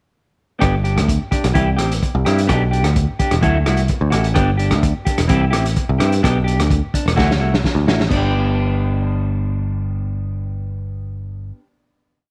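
Light reverb and a studio ambience frame this short, warm, danceable highlife guitar band piece, with all three parts sitting up front. A muffled, lo-fi vintage drum kit plays a highlife groove with a tight kick, medium-tuned snare, rim clicks, hi-hat and crash, while a dark, round picked electric bass carries a syncopated figure and a clean electric guitar, coloured by analog chorus, strums rhythmic upper chord shapes over a cycle built on G, C, G/B and Dadd9. A drum fill from 7.2 seconds leads to the drums stopping at 8.2 seconds, leaving the guitar and bass to ring out a final G chord.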